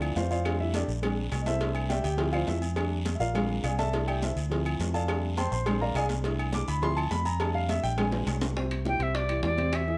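A straight 4/4 groove at 207 BPM drives this lively, sophisticated Afro-Cuban jazz excerpt in C major, where thin, high-tuned congas, round low-tuned cowbell and bongos struck with hard hands, ringing saturated agogo bells and timbales, woody claves and a raspy, close guiro ride over a dark, punchy fingered electric bass while an intimate grand piano, its action noise audible, solos up front over cycling F69, Bb7, C69 and Dm7 chords until a drum fill at 8.1 seconds leads to a Cadd9 and an airy, reedy jazz flute with vibrato enters at 8.9 seconds, all in light reverb.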